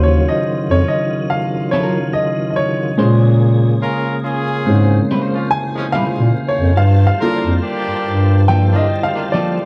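A woody, vintage upright piano takes the solo across this short soulful, late-night R&B excerpt, sitting up front with a smooth touch and short sustain. Beneath it, a mellow bass clarinet carries the bass line close and up front, its soft attack and gentle vibrato giving the low end a jazz-style glow. A full tonewheel organ holds sustained chords through light overdrive, chorus vibrato and a slow rotary speaker, while an electric guitar at the edge of break-up adds a compressed, fingered second line with analog chorus from 1.7 s. A bright, punchy horn section lands tight stabs with slapback echo from 3.8 s. The slow 71 BPM groove swings its sixteenths over Ebm9, Bbm9 and Gm9 chords, and the dark, dry production carries a layer of vinyl crackle.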